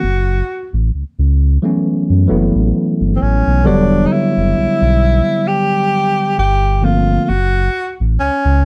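A sultry, introspective R&B and neo-soul piece at 66 BPM with a lightly swung sixteenth feel opens on a distant, roomy tenor saxophone melody with vibrato and slapback echo, a worn, slightly out-of-tune tine electric piano with overdrive accompanying over F#m7, Em9 and Gm7 until it stops at 7.3 seconds, and a deep, sine-toned sub bass with octave, all in a dry, close 1970s-style studio sound with light reverb.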